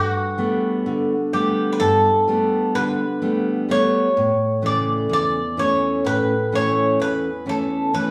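This short passage of Greek folk music opens with a bouzouki and a fingerpicked steel-string acoustic guitar sounding together from the start, both placed up front in a peaceful, tender mood. Moving in 9/8 at 127 BPM counted in eighths with a straight feel, it is cut from a longer piece and runs about 8.1 seconds. The bouzouki carries the melody between F#4 and D5, its paired double strings giving a metallic, picked edge, with some octave-doubled courses among them. Beneath it, the dreadnought guitar supplies a full-bodied accompaniment from E2 to C#4, with an audible finger squeak among its warm fingerpicked tones. The harmony rests on Gadd9 before moving to A at 4.2 seconds. The two players sound as a band performing live in one room, bathed in a wet large studio reverb of 0.8 seconds.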